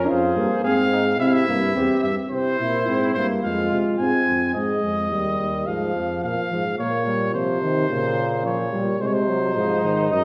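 A solemn, driving brass canzona opens with four parts together: a clear, up-front cornet carries the melody with vibrato over a warm, distant flugelhorn on the second line, a smooth-topped trombone in accompaniment, and a roomy bass trombone anchoring the low end. The trombone and bass trombone share a mellow, classical tone, and the imitative writing moves at a straight 108 BPM in 4/4. The harmony leans on F minor and C before shifting toward B-flat minor and darker diminished chords in the second half. The flugelhorn drops out at 4.5 seconds, leaving the cornet and the trombones to carry on, then returns at 9.0 seconds for the close. A recital-hall reverb gives the sound a resonant, churchlike depth in this brief passage cut from a longer piece.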